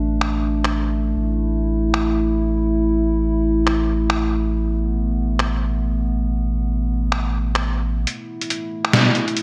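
A dark, nasal analog pad with chorus holds sustained A5 chords over a thick, saturated sub bass in this cavernous, brooding deep dubstep excerpt at 139 BPM, with a half-time, swung feel. From 0.2 seconds a gritty, pitched-down, sampler-style trip hop kit of finger snaps, hi-hat and a medium-tuned snare sits up front, compressed and dressed in small room and gated reverb. At 8.1 seconds the bass drops out and a build-up begins under the pad and drums, all set in a lush hall ambience with bright 1980s-style digital production.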